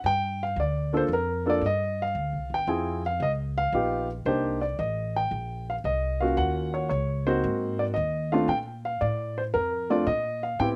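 An intimate grand piano carries the melody up front, its short sustain and audible action noise giving this smoky, cool swing jazz excerpt a natural, close feel. Beneath it, a woody, growly pizzicato upright bass on steel strings sits up front as well, moving through minor-seventh and ninth chords before settling on Bbmaj7 at 8.5 seconds. The dry sound, recorded outdoors with little reverb, keeps both instruments plain and immediate.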